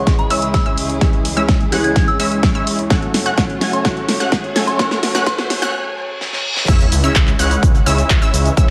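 A punchy, up-front electronic kick drives a straight 4/4 at 127 BPM alongside a big-room kit with a huge snare, handclaps, hi-hat, cabasa and crash cymbal, in this emotional, powerful festival progressive house excerpt in C# minor that moves from C#m to F#m. Over a build-up with drum fills and a filter sweep, a soft, pure FM synth bell carries the melody through chorus, phaser and tape echo, while a detuned sawtooth supersaw stab riff, a bright unison pluck arpeggio with cassette tape colour, a background grand piano and a distant bowed string section with vibrato pulse under sidechain pumping, and a riser, reverse cymbal and sub drop enter at 2.8 s. After a short break, the drop lands at 6.7 s with an impact and a thick, menacing detuned saw bass on C#2, the whole mix sitting in light reverb and digital ambience.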